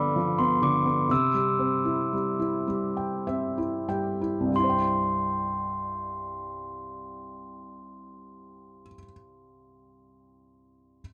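A glockenspiel struck with rubber mallets carries the melody up front, its bell-like, ringing tone kept mellow by the mallets, before falling silent at 9.0 seconds. This sleepy, innocent children's lullaby moves in a lilting 6/8 with a free, rubato feel, slowing down through its opening phrase. Beneath it, a felt-muted upright piano supplies the accompaniment, intimate and hushed, with its action noise audible, and it lingers on alone until 11.0 seconds. A gentle piano fill arrives at 2.7 seconds, after a G7 chord settles onto C early on. Cut from a longer piece, the recording has the dry, close sound of a 1970s-style studio.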